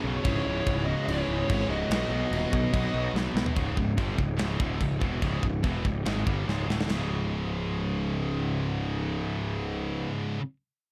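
Heavy metal at 144 BPM in C# minor with an epic, dark mood, this excerpt opens in half time with a growly, punchy fuzz bass up front under bright high-gain rhythm guitars, a very quiet double-tracked crunchy guitar and a lush, detuned sawtooth pad, while two dark lead guitar lines, one carrying tape echo, sing over C#m and B before the pad, crunch guitar and leads drop out around 3.6 s. The rhythm guitars and bass carry on with a tight, big-room drum kit, whose china and crash cymbals and fills drive the later sections until it stops at 7.0 s, and the rhythm guitars and bass then ring on a C#5 power chord, all in a light reverb.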